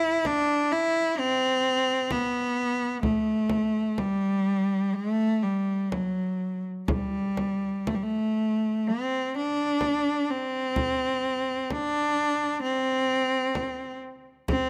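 A single bowed cello carries the melody from the opening moment, its rich tone shaped by a smooth, even vibrato and placed up front and close to the listener. This is a Caucasian folk lament, solemn and full of longing, moving at about 64 BPM in 4/4 with a freely flowing rubato feel. The cello line stays within a middle register, from F#3 to E4, and it sustains throughout the 14.7-second fragment of a longer piece. A deep, large acoustic frame drum joins at 0.2 seconds, heard close and dry and sitting lower in the balance beneath the cello. Closely placed, detailed microphones and a light reverb give the recording an intimate, clear presence.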